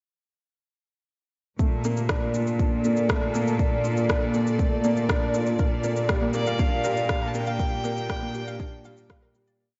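Soaked in lush hall reverb and softened at the top, this dreamy, hopeful piano-and-strings electronica moves at 120 BPM in Bb major, with everything arriving together at 1.6 s: a deep, up-front four-on-the-floor electronic kick, a restrained shaker and rim pulse, a bright cello section holding a sustained root bass, and a warm, sul tasto string section pumping with the sidechain on slowly shifting chords. A felt-muted upright piano, mellow and intimate with audible action noise, loops a six-step arpeggiated riff that drifts against the bar through chorus and delay. At 5.6 s a detuned analog pluck adds a quiet, sweeping arpeggio sequence in the background, and from 6.3 s an airy, earthy solo violin sings a tender motif through delay before the piece fades out from 6.9 s.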